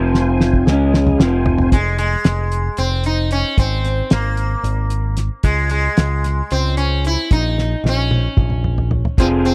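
A buzzing, shimmering sitar carries the melody through this dark, trippy psychedelic rock excerpt, its plucked lines trailed by tape echo. The piece runs in 7/8 at 225 BPM counted in eighths, in F minor, moving through Fm, Db5, Absus2 and Bbm. A slightly broken-up, lo-fi electric guitar through a small old amp plays a phased riff up front. A reedy tonewheel organ sustains chords through a slow rotary speaker with chorus vibrato, and it and the guitar drop out at 1.7 seconds and return at 9.2 seconds. Underneath, a round picked electric bass sits beside a cloth-damped, thuddy drum kit with a fat snare and tight kick, the drums playing fills at the opening and again from 7.6 seconds. The sound is dry and close, in a 1970s studio style with little reverb.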